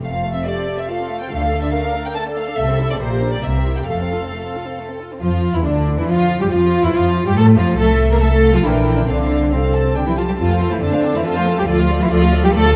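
A close double bass section sits up front with a dark, soft-attacked sul tasto tone, anchoring this quick, lively classical-period movement for string orchestra in F major at 140 BPM in 3/4, while a distant cello section shares the bass line. Above them, a floating, pure violin melody rides over a second violin line, and the viola section joins at 0.5 s with a woody, lush accompaniment touched by vibrato. A moderate scoring-stage reverb lends the graceful movement's dark, warm production its space, and this passage from a longer piece moves into a new section at 5.2 s.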